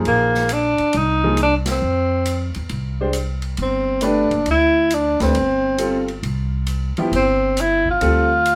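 A clear, intimate baby grand piano and a woody pizzicato upright bass open this cool, intense modal jazz excerpt at a swinging 136 BPM, joined at once by an up-front, vintage-toned tenor saxophone carrying the melody and an airy drum kit with dark cymbals and a boomy kick, the full band hitting an accent at 1.6 seconds as the harmony moves from F7sus4 to G9sus4 at 3.6 seconds inside a wet studio reverb.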